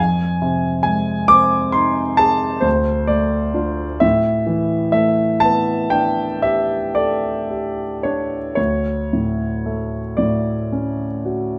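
Classical impressionist solo piano in 9/8, played with free rubato and a hazy, dreamy mood. A single grand piano sits up front with a present, warm tone and long sustain, ranging from D2 to D6 in light reverb. Its harmony drifts from Fm7 to Dm, settles on a lingering A9sus4 at 4.0 seconds, and arrives on an open D5 at 8.6 seconds in this short extract from a longer piece.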